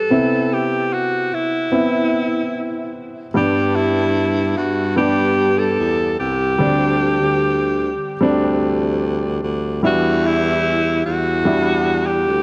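Emotional and hopeful, this slow 74 BPM pop excerpt in G major sets an edgy alto saxophone melody with vibrato over warm, intimate concert grand piano accompaniment with audible action noise, while a clear baritone saxophone with soft, scooped jazz-style notes enters on the bass at 3.4 seconds, all wrapped in light studio reverb and the warbling pitch drift of worn cassette tape.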